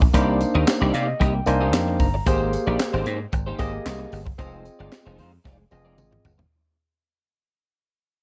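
Early-eighties boogie funk at 113 BPM with a funky, slick mood, cut from a longer piece and fading out across its 6.5 seconds: a tight, airy drum kit with a high-tuned snare, handclaps and gated reverb plays alongside a punchy, foam-muted thumbed slap bass. A barky tine electric piano through a combo amp accompanies over Cm9, Abmaj9 and Fm7 and plays a fill from 0.7 to 2.3 seconds. A slightly broken-up electric guitar with ensemble chorus carries the riff, a jingly tambourine sits in the background, and a drum fill arrives at 5.5 seconds.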